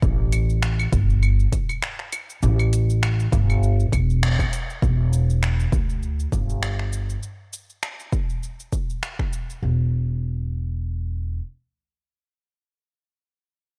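A dark, dry production frames this mystical, gently swung organic downtempo fragment. A woody, growly pizzicato upright bass sits up front with sidechain pumping, beside a punchy, overdriven electronic kick and an overdriven deep house kit of cabasa, claves, finger snaps and metallic hi-hats. After a band accent at 4.2 seconds, the kick drops out at 9.3 seconds and the kit at 9.6, leaving the bass alone until 11.4 seconds.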